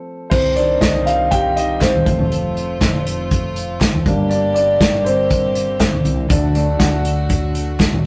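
A concert grand piano, open and deep in the bass, is heard first before its solo takes over at 0.3 s in this dramatic, driving piano-driven pop piece in G minor at 120 BPM, joined by an up-front acoustic drum kit played with bundle sticks, a dark, round fretless electric bass, bright, earthy bowed chamber strings holding sustained chords, and crisp, band-limited group handclaps in the background from 0.8 s, as the harmony moves through Cm, F, Gm and D in a rough rehearsal-room recording with moderate reverb and warm saturation.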